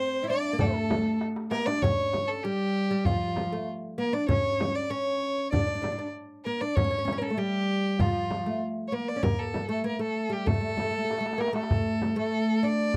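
A single bowed violin leads this longing, hypnotic Arabic maqam ensemble piece in A maqam hijaz at 97 BPM in straight 4/4, its rich, vibrato-laden tone sitting up front beside a bright, woody fretless oud on double strings. A very quiet, clear violin section adds a second line only until 1.2 seconds. A crisp, deep metal-shell darbuka played with soft hands and an acoustic frame drum carry the percussion, with drum fills at 1.2 and 11.1 seconds. The dry, close 1970s-style studio sound carries light reverb, and the recording is cut from a longer piece.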